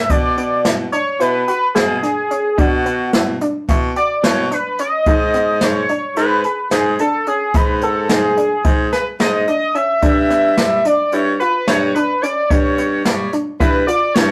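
An up-front, bold octave-doubled lead with chorus and vibrato carries the melody through this tense, intricate progressive instrumental excerpt in 9/8 at 218 BPM (eighths) in B dorian, over nasal, wave-folded analog pluck arpeggios, a raspy, gritty baritone saxophone bass line and a boomy-kicked brush drum kit, all moving through Bm, G#m and G7 in a rough rehearsal-room sound with saturation and moderate reverb.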